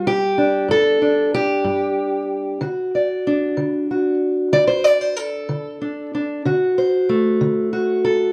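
Acoustic country blues in a slow 12/8 with a gritty, soulful mood, this short excerpt features a lone fingerpicked steel-string parlour guitar, dark and boxy and sitting up front, moving from G to D at 2.6 seconds inside a wet studio reverb.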